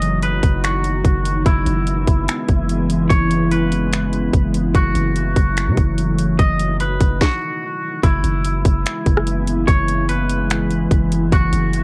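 Atmospheric cloud-rap hip hop with a spacious, melancholic half-time feel, where a clean, twangy electric guitar melody softened by tape-style filtering and analog delay drifts over a glassy, warbling FM pad with chorus and pumping sidechain, while a deep, mellow sine 808 bass and an up-front trap kit of hard-clipped kick, sharp snare, metallic hats, rim clicks and finger snaps carry the groove through a brief stop at 7.2 seconds in this cassette-recorded snippet from a longer piece.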